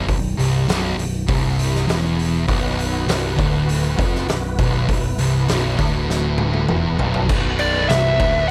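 Two thick fuzz guitars grind out a riff in B phrygian over a Bm chord in this hypnotic, ominous stoner and doom metal excerpt at 100 BPM in 4/4. A growly, punchy picked bass sits underneath, and an oversized, low-tuned drum kit with a boomy kick, fat snare and dark cymbals sounds roomy and gritty, rolling into a fill at 6.1 seconds. A tonewheel organ drifts in at 2.5 seconds behind everything else, holding sustained chords through a slow rotary speaker and chorus vibrato, before a dark fuzz lead guitar pushes up front with a brief high melody at 7.6 seconds.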